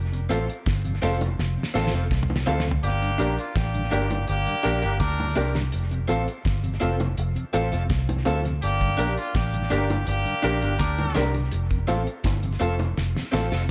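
Roots reggae at 83 BPM in straight 4/4, laid-back and serious, with a dark, foam-muted fingered electric bass up front on F and G minor, and a dry 70s drum kit with a fat snare and tight kick, touched with dub echo, playing fills at 1.4 and 13.0 seconds. A slightly broken-up, lo-fi guitar through a small old amp with spring reverb and dub echo joins a woody, slightly detuned upright piano playing stabs, while a mellow tonewheel organ with chorus vibrato and slow rotary speaker sits in the background alongside low-tuned bongos. A bright, punchy horn section with dub echo carries a second line from 2.8 to 11.3 seconds, all in a small room with a softened top end.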